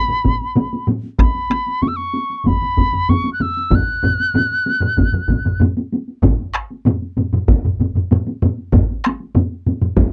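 Japanese traditional taiko drum ensemble music in a straight 4/4 feel, powerful and driving, in this brief cut from a longer piece. A mellow piccolo carries the melody up front with a pure tone, soft attack, rolled-off highs and vibrato until 5.6 seconds. Four taiko ensemble parts drive the rhythm: one with hard sticks sounds compressed and saturated, another with heavy sticks is close and dry, and two more sit in a small room, the heavy-stick one pushed forward, all in a dry, close 1970s-style studio sound with light reverb.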